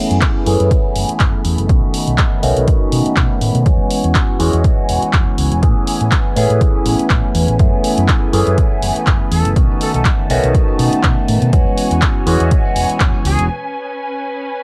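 Filtered disco house with a funky, nostalgic swing, this short excerpt opens on a barky, up-front tine electric piano through a phaser, a round hollow-body electric bass and lush, distant bowed violins, all pumping under a low-pass filter sweep over F#m11, B7, E69 and Amaj9 chords. A punchy electronic kick sits up front beside tape-toned drum-machine handclaps and hi-hats, with a barely audible tambourine in the background of a small, dry, gritty room. A clear, tight trumpet section flashes in briefly at 9.3 s, and the groove breaks at 13.5 s as the violins hold on alone until 14.6 s.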